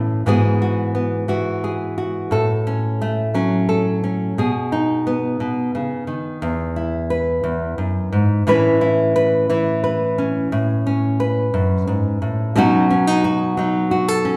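A solo nylon-string guitar sits up front in this gentle, pastoral folk excerpt, its fingerpicked classical tone acoustic and warm. Moving in an unhurried 6/8 with a straight feel, the guitar spans from a low E2 up to B4, filling the space alone across the full 14.4 seconds. The harmony drifts through colored chords such as Eadd9/G#, F#m/A and B6 before a second section begins at 6.4 seconds, settling on E and then moving through Aadd9 toward a closing Badd9. A wet, large studio reverb with a 1.4-second decay surrounds the guitar, giving the live room recording a spacious, airy halo. The piece is cut from a longer work, so the passage feels like a calm moment lifted from a larger whole.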